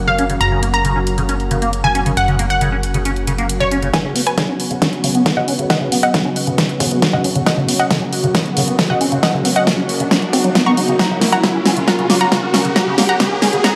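In a straight 4/4 feel, this euphoric, emotional uplifting trance excerpt layers a thick, detuned sawtooth pad, a round, dark FM bass that stops at 3.9 s, a bright unison pluck melody with delay and a filter sweep, a full-bodied supersaw stab in the background, and a squelchy, resonant acid bass arpeggio with phaser and chorus, all pumping under sidechain, while a big-room kit with a huge, up-front snare and hi-hat drives a drum fill and build-up from 3.9 s, where a punchy, high-passed electronic kick enters, and a background riser joins at 6.9 s, the whole mix washed in large studio reverb as if played on a big sound system in a bare room.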